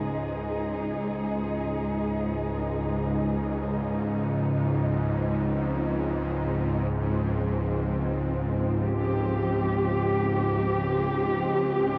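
Unsettling and desolate, this dark ambient drone excerpt pairs a veiled, con sordino symphonic cello section holding sustained chords that settle on Fm7 at 4.3 s with a tense, bright, sawtooth bowed-like drone of slow attack and vibrato, the cellos bathed in shimmer reverb and the whole recording sunk in a huge ambient space and worn, warbling cassette tape drift.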